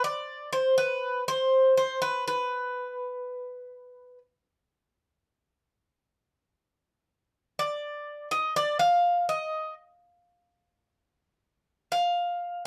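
Set in a 9/8 metre with a straight feel, this Greek folk fragment starts at 124 BPM counted in eighths and gradually speeds up across its whole length. A lone Greek bouzouki carries everything, playing from 0.0 to 12.6 seconds as an unaccompanied solo. Its picked double strings give a warm, metallic edge, with some strings doubled at the octave, and the instrument sits close and up front. The line stays in a narrow upper register between B4 and F5, tuned slightly above standard pitch to A4 = 443 Hz. The mood is reflective and dark, with a moderate small-room reverb of about 0.5 seconds adding a touch of space, and the passage is clearly cut from a longer performance.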